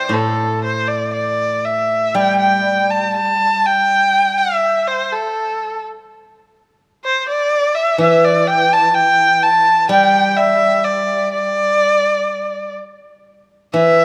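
This is Chinese traditional music for a small chamber ensemble, tender and wistful, moving at a slow 62 BPM in 4/4 with a free, rubato feel. A single bowed erhu carries the melody from A4 up to A5, its rich tone shaded with vibrato and gliding portamento, smooth and even as it sits up front in the mix. Underneath, a steel-string zither played with fingerpicks supplies the accompaniment across a broad range from A2 to C5, its ringing, silvery notes placed a little lower in level than the erhu. After a brief opening passage, a second section arrives at 2.2 seconds and continues to the end of this short clip, which is cut from a longer piece. Close, detailed microphones capture both instruments, while a moderate concert hall reverb lends the sound a gentle sense of space.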